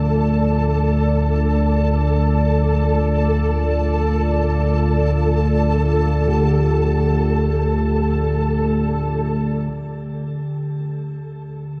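A cavernous, echoing reverb wraps this dark ambient drone, a passage cut from a longer piece that drifts in free time with a vast, ominous mood. Up front, a deep rumbling drone spanning D2 to D3 warbles with a vintage, wave-folded character and lush chorus, holding through the full 11.8 seconds, with a filter sweep shaping it from 9.7 seconds. Above it, a moody, full-bodied analog pad sustains detuned chords over D minor, its slow attack and long release blurred by chorus and shimmer reverb until it stops at 9.7 seconds, when the harmony settles onto a bare D5. A flickering, grainy texture hovers on A4 throughout. In the background, a metallic bronze singing bowl enters at 6.3 seconds and keeps fading in until 9.7 seconds, ringing out meditative arpeggios on D3 with slow beating and a diffuse ambient delay.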